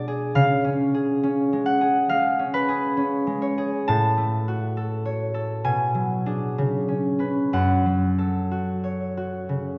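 Rubato and unhurried in 4/4 at around 60-71 BPM, this short cut from a longer classical piece for solo concert harp feels mysterious and gentle in F# minor. The fingerpicked harp rings out up front across a range from F#2 to A5, its acoustic tone warm, while a wet scoring-stage reverb gives the sense of hearing it from further back in the room. The harmony drifts from C# through F#m/A and G#m7b5/B before settling on F#m at 7.5 seconds.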